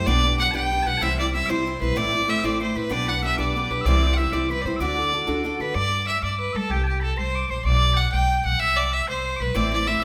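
A cheerful, rollicking Celtic jig in 6/8 at 126 BPM opens with a clear, nasal fiddle carrying the melody up front, a piercing bagpipe second line, boxy picked steel-string guitar that drops out at 5.8 seconds and returns at 9.5 seconds, and woody, thumpy pizzicato upright bass, all set in a moderate recital hall reverb and moving from G/B, C and Am through a Bbmaj7sus2 to a closing Cmaj9 in this short cut from a longer piece.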